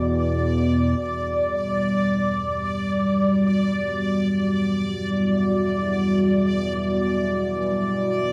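An ominous ambient drone piece opens with an evolving, detuned analog drone in the low register, a bright, resonant texture bubbling through random filter steps up front, and faint, natural-sounding baby grand piano arpeggios that stop at 3.6 s. The harmony shifts from Em7 to Emadd9 at 1.0 s, and from 1.6 s a deep, moody analog pad enters with mellow sustained chords, while chorus colours the synthesizer parts. A long cathedral reverb and a shadowy, warm production wrap this excerpt in a vast, enveloping space.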